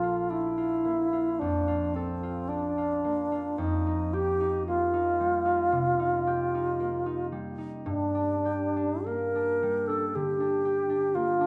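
Dreamy and pastoral, this short rubato fragment of a classical impressionist duo drifts at 47-60 BPM in Bb major, with a pure, bright alto flute singing the melody up front with vibrato and soft attacks over a mellow, ringing, fingerpicked concert harp that moves from Bbmaj7 to F9sus4 to Gm, both heard together throughout the 11.5 seconds in a lush recital-hall reverb.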